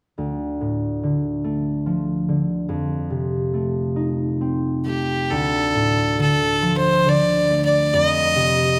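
A clear, earthy fiddle, bowed close and up front by a single player, enters at 4.9 s over a ringing, thumb-plucked concert harp that has sounded since 0.2 s, in this fragment of a haunting, longing Celtic slow air in 3/4 that moves with a rubato, uneven sway between Dm and F7 chords inside a moderate scoring-stage reverb.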